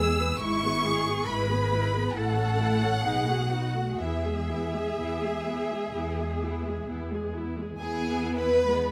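Set in a slow, rubato 4/4 at 60-70 BPM, this serene, lyrical passage from a romantic movement for string orchestra in E major is cut from a longer piece. A dark, woody violin section carries the melody, spanning E5 to E6 with vibrato, while a second violin section, rich and close, sings an expressive line alongside it. Violas fill in the accompaniment with a focused, smooth-topped tone, and the up-front double basses anchor the bottom with soft-attacked bowing. The cellos add portamento and a gentle glow before stopping at 7.3 s. The harmony moves from E/G# through A and B7 to settle on E at 4.0 s, a new section begins at 7.8 s, and a moderate recital hall reverb gives the chamber ensemble a natural sense of space.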